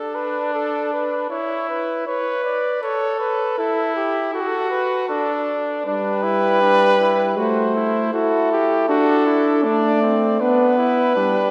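A warm, close-miked trumpet carries the melody while a clear, soft-edged second trumpet weaves its own line beneath it, both with light vibrato, in this lively yet stately classical canzona for brass in G major at 79 BPM. At 5.9 s a distant, roomy trombone joins as accompaniment with the same light vibrato, and the three voices sit in a wet concert hall reverb as the harmony moves through G, Am and D before arriving at G/B.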